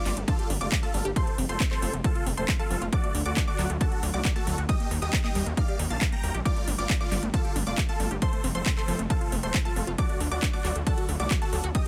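Uplifting trance at 136 BPM in a straight 4/4, this excerpt feels emotional and driving from the first beat, cycling through Gsus2, F, D and Eb chords. A huge, euphoric supersaw lead carries the melody with a bright, detuned sawtooth tone shaped by phaser, tape echo and sidechain pumping, while a lush unison pluck plays a higher second line in the background with its own echo and pumping. Beneath them, a tight sequenced synth runs arpeggios through chorus and phaser, and a silky, string-like analog pad holds very quiet sustained chords with a soft attack and gentle vibrato. The low end belongs to a gritty, aggressive synth bass, distorted and tube-saturated, sitting up front and pumping against the beat. A house kit of handclaps and metallic hi-hats comes in at 0.1 seconds, and a punchy, overdriven electronic kick follows at 0.3 seconds to lead the mix, both re-recorded in a large room, with a digital ambience surrounding the whole track.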